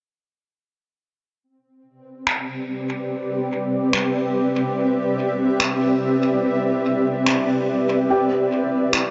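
Spacious and meditative, this ambient dub fragment, cut from a longer piece, drifts on a blurred, detuned granular cloud pad holding sustained chords from 2.2 s, joined at 2.3 s by tape-warm electronic finger snaps carrying dub echo and the character of a large room, before a soft, felt-muted upright piano slips in with intimate arpeggios at 8.1 s as the harmony moves from Cmaj7 to Em7, the whole recording sitting in a huge ambient reverb with a dark, rounded top end.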